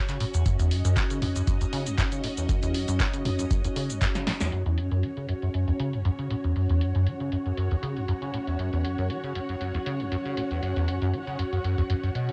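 Acid house at 118 BPM in 4/4, this driving, hypnotic cut from a longer piece rides a light 16th-note swing over an F#5 chord. Up front, a squelchy, resonant sawtooth acid bass plays a riff under a filter sweep through the opening 4.5 seconds, colored by phaser and subtle chorus, while a lush, vintage string machine holds slow-attack sustained chords with ensemble chorus and a sub octave, both pumping against the sidechain. A punchy analog drum machine supplies cabasa, handclaps, hi-hat, snare and toms, its parts low-pass filtered and its snare, clap and hats set in a short room, joined by an overdriven, deep electronic kick from 0.5 to 4.1 seconds. A drum fill from 4.1 seconds and a band accent at 4.4 seconds lead into the second half, where a dark, bowed chamber string section enters softly at 4.5 seconds with vibrato and an expressive, smooth top. The whole recording carries the character of a home cassette recording in a moderate studio reverb.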